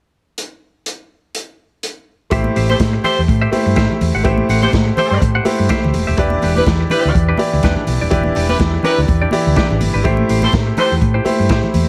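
Mellow, punchy horn stabs with a light vibrato sit up front from 2.7 seconds in this glamorous, danceable disco cut, taken from a longer piece and swinging gently on its sixteenths as it moves between Am7 and Em7. A muffled, lo-fi drum kit with a punchy kick plays alone at first, and then at 2.3 seconds the round, dark fingered bass, a clear baby grand piano with audible action noise, a clean, compressed semi-hollow guitar bathed in spring reverb, and very quiet, damped congas all come in together. A small room ambience and light reverb wrap the whole track.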